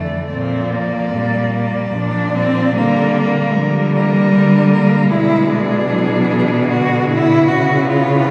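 A cathedral's long, wet reverb surrounds this brief classical excerpt, an 8.3-second passage cut from a longer lyrical piece for a cello ensemble of four single bowed players. The mood is yearning and elegiac, moving in a rubato triple metre with uneven beats. A clear, intense cello with vibrato carries the melody high in its range, yet it sits softer in the blend than the rich, focused second line, the most prominent voice. Beneath them a close, even cello plays smooth accompaniment with light vibrato, while an expressive bass cello with vibrato and portamento anchors the low end. The harmony passes from Bb through Bb/D and G#dim/B before arriving on C#7 at 7.5 seconds.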